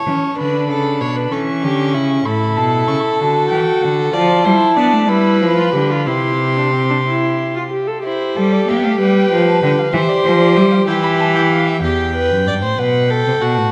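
Solemn yet driving, this baroque-style fugue for string quartet moves at 63 BPM in a straight 6/8, settling into C major from 4.1 s. A distant, nasal first violin carries the melody over a second violin with light vibrato, while the viola supplies smooth-topped accompaniment until 11.8 s and an up-front cello anchors the bass, all four bowed period style on gut strings. Moderate concert hall reverb and a dark, warm production frame this short cut from a longer piece.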